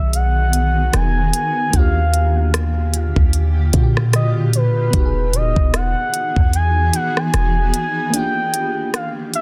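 This short fragment has a dense, heavily limited modern sound in a digital ambience, with the 808-style bass and drums placed up front. It is a romantic, dreamy piece of contemporary R&B with a gently swung sixteenth-note feel, drifting between Emaj9 and Ebmaj9 chords. A deep, boomy sine 808 bass with a fast, decaying attack anchors the low end, while the smooth R&B kit pairs a knocking electronic kick with silky hi-hats and rim clicks. A vintage FM electric piano with a warbling noise layer and phaser accompanies in the middle register, over a cloudy, evolving granular pad whose blurred, detuned chords sit in its own reverb. On top, a gliding portamento lead of detuned triangle and sine tones carries the melody with vibrato, chorus and delay. The bass stops at 7.7 s, and a break begins at 8.1 s, leaving the drums, keys, pad and lead to float to the end at 9.4 s.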